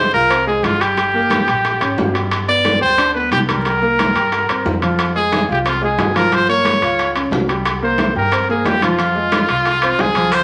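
A punchy, up-front trumpet carries the melody with vibrato through this fiery, danceable salsa excerpt, backed by a present grand piano with deep bass and short sustain and a woody, thumpy upright bass. Ringing, distant congas, tight high-tuned bongos and vintage metal-shell timbales drive the groove, with grainy maracas entering only at 10.3 seconds. The whole cut sits in a wet studio reverb under a layer of vinyl crackle with a dulled top end.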